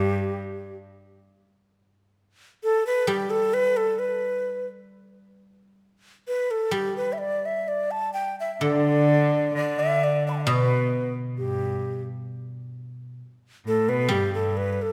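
Set in a reverberant recital hall, this graceful, pastoral passage of Chinese chamber music moves in a free, rubato 2/4, led by an up-front, breathy bamboo xiao with vibrato and a crisp attack, while a reedy, gut-string cello bows a second line that drops out at 0.8 seconds and returns at 8.6 seconds, and a silvery, ringing guzheng played with fingerpicks enters at 3.1 seconds to accompany.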